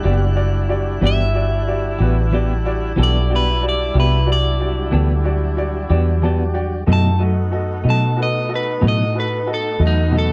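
A bright, twangy electric guitar at the edge of break-up carries the melody from 1.1 seconds in this brooding, mournful 12/8 blues, cut from a longer piece. Beneath it, a dark, round, foam-muted fingered bass sits up front, a hollow-body electric guitar adds compressed, picked accompaniment with tremolo, and a clear grand piano with short sustain accompanies throughout and adds a fill at 5.9 seconds before the harmony moves from Em7 to B7. A mellow saxophone section holds sustained chords alongside a smooth tonewheel organ turning slowly through a rotary speaker in the background, all captured dry and close in a 1970s-style studio sound.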